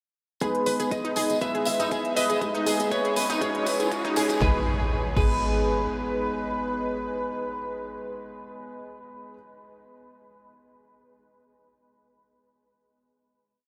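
Bittersweet and driving, this short progressive house piece at 120 BPM in G# minor runs a build from 0.4 to 4.4 seconds, where a clean, picked electric guitar melody with a filter sweep and diffuse ambient delay is doubled in unison by an airy, detuned supersaw. Beneath them an analog pluck loops a six-step sequence drifting against the bar, an up-front concert grand piano holds open-voiced chords with syncopated pushes, and a tight sequencer bass gallops in sixteenths, while a deep four-on-the-floor electronic kick, a programmed pop kit with a fat snare, crisp hats and crash, and a jingly hand-played tambourine drive toward a drum fill from 2.4 seconds. Background risers and impacts mark the transition, and from 4.4 seconds a final G#m chord rings out from guitar, supersaw and piano in a dreamy mix soaked in huge reverb.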